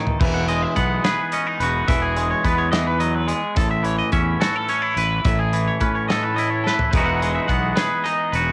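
Rolling in a straight 6/8, this wistful, intricate math rock and midwest emo excerpt opens on two clean, twangy electric guitars, one playing accompaniment through spring reverb and the other picking bright, scooped arpeggios higher up, as a loose indie kit with dark cymbals and a punchy kick comes in on a drum fill. A growly fuzz bass with overdrive sits up front beneath them as the harmony moves from Emaj9 to Aadd9 and back to Emaj9, with another drum fill at 6.7 seconds. The guitars and drums carry the hazy tint of a home cassette recording in a dry space.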